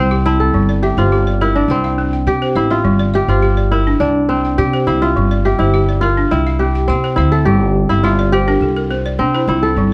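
Reflective and hypnotic, this excerpt of West African string and xylophone music moves at 104 BPM in G dorian, with a mellow, ringing fingerpicked kora carrying the melody up front, a dry, buzzing balafon struck with hard rubber mallets weaving arpeggios before a fill at 7.9 seconds, and a thumpy pizzicato upright bass on steel strings anchoring the low end, all in a dark production with light reverb.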